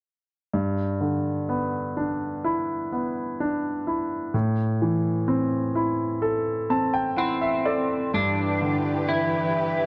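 In a slow, straight 4/4, this tender, heartfelt pop piece, cut from a longer work, opens at 0.5 s with a bright, up-front concert grand piano accompaniment moving between G6 and Am, its deep bass and short sustain giving way to a polished fill at 6.2 s. An edge-of-break-up electric guitar enters with the melody at 7.2 s, picked, twangy and compressed under a lush chorus. A warm, bowed string section arrives at 8.1 s with smooth, vibrato-rich sustained chords as the harmony returns to G6, all set in a small room with light reverb and a dark production.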